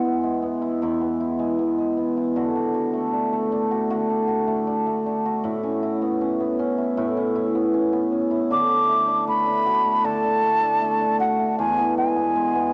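Hopeful and delicate, this folktronica excerpt moves at an easy, straight pace, built on cimbalom arpeggios that ring and shimmer up front with a touch of vintage sampler grit, cassette tape color and analog delay, running from start to finish over chords moving from E through D and Aadd9. A breathy, mellow concert flute with vibrato and a crisp attack sounds briefly at the opening, then returns at 8.5 seconds to carry the melody expressively, its highs gently rolled off under the same tape and delay treatment. Light reverb and the homemade cassette sound lend the whole a soft, intimate glow.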